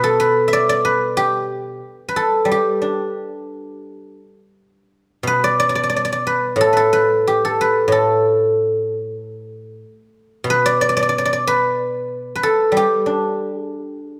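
This serene, pastoral Chinese traditional piece for solo plucked strings features a guzheng alone, played with fingerpicks in G gong mode, moving freely in rubato around 91 BPM in 4/4. The instrument sits up front with a silvery, ringing tone across a span from A2 to E5, lightly touched by reverb. An opening passage gives way to a new section at 5.3 seconds that carries through to 14.2 seconds in this fragment of a longer work.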